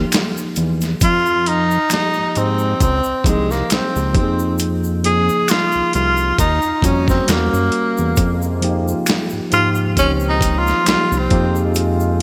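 A slow 67 BPM neo-soul R&B groove in F minor with a lightly swung 16th feel carries this introspective, late-night excerpt, where a breathy, whispered tenor saxophone solos up front from 1.0 seconds over a worn, slightly out-of-tune tine electric piano with lush chorus, a fat, wave-folded analog bass, a gritty, overdriven sampler-style drum kit with gated reverb, background finger snaps and egg shaker, and a warm trombone section adding delayed stabs from 8.2 seconds, all set in a lush hall with bright 1980s-style digital sheen.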